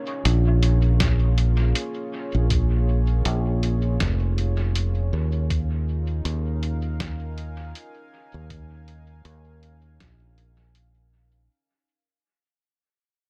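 Spacious and hazy, this short ambient dub passage drifts with a gentle swing and fades out across its full length. A smooth, detuned analog pad sustains slow-blooming chords through a chorus effect, its sawtooth and triangle tones thickened by a sub octave. A woody kalimba plays a brief, very quiet, ringing arpeggio at the very start before dropping away by 0.9 s. The fingered electric bass sits up front with a round, direct, dark tone from 0.3 s. A compressed, pitched-down, sampler-style kit adds muffled hi-hat and a medium-tuned snare trailed by dub echo, while an electronic kick joins at 1.0 s as a thumpy, tape-warm pulse in the background. The mix is dry in its room sound yet heavy with echo, and the harmony moves from Bbm7 to Eb7sus4 midway.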